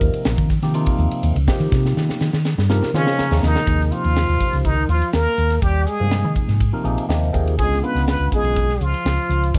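A barky, lightly overdriven tine electric piano with phaser, a round hollow-body fingered bass and a crisp fusion kit with a high-tuned snare and punchy kick open this funky, slick electric jazz fusion groove at 123 BPM in Eb mixolydian over an Eb13 chord. At 3.0 seconds a brilliant, plunger-muted trumpet with wah-wah and light vibrato enters on the melody, sounding distant and roomy, alongside a breathy trombone with a smooth top on a second line. A drum fill and an electric piano fill lead into the Ebsus4 change at 3.7 seconds, and the electric piano drops out at 8.7 seconds, all set in a dark production with light reverb and small room ambience.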